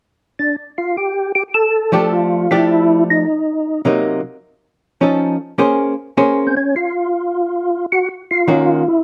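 A relaxed swing in four, with eighth notes rolling in a lilting triplet feel, carries this brief, bluesy jazz fragment. A percussive tonewheel organ takes the melody from 0.4 s, its mellow, round tone colored by a slow rotary speaker, chorus vibrato, third-harmonic percussion and a slapback echo, sitting up front in the middle register. At 1.9 s a miked, amplified hollow-body archtop guitar joins in accompaniment, its picked, compressed electric sound dark and clean, and it drops out at 8.8 s just before the organ ends at 9.0 s. The harmony moves from an F sixth-ninth through Cm7b5 and F7b13 to a Bb minor ninth and then Eb minor seventh, giving the passage a smoky, searching color. Recorded outdoors with little reverb, the sound is dry and close, with both instruments balanced evenly and present.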